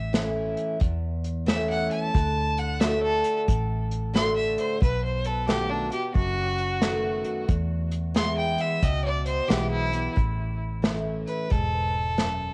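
A swung 4/4 groove at 90 BPM sets up this sunny, heartfelt honky-tonk and classic country piece in A major, cut from a longer song, with an airy, up-front acoustic drum kit played with bundle sticks, a punchy kick and medium-tuned snare alongside a dark, round, foam-muted electric bass. A bright, full-bodied picked steel-string dreadnought guitar, its finger squeaks audible, carries the accompaniment through A, D, B7 and E, while a focused bowed fiddle with light vibrato and analog delay takes a clear solo until 10.2 seconds. The home cassette recording gives the fiddle, guitar and drums a tape character, all set in a small room with light reverb.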